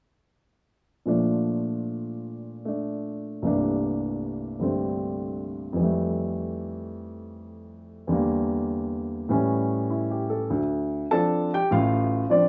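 Late-night and moody, this short cut from a longer solo jazz piece features a dark baby grand piano playing alone from 1.1 to 12.5 seconds, at about 102 BPM in 4/4 with a swung, rubato feel. The mellow, smooth, vintage-toned piano sits up front, ranging from A1 to A5 as it moves through Bbmaj7, C13, Fmaj9, Em7b5 and A7 before a new section arrives on Dm7 at 10.5 seconds. Light reverb and a small room ambience give the sound an intimate setting.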